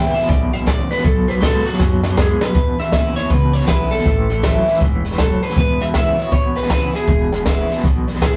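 Up-front brushed drums with a high-tuned snare and boomy kick drive this rollicking, upbeat rockabilly fragment with a swung feel, as a twangy electric guitar through a small old amp carries the melody throughout, opening with a clean, lo-fi solo until 2.5 seconds, capped by a drum fill from 1.8 seconds, while a second, slightly broken-up amp guitar carries a low riff with tremolo, a bright, full-bodied steel-string dreadnought picks the accompaniment, and a woody, thumpy gut-string upright bass sits in the background of a rough rehearsal-room recording with light reverb.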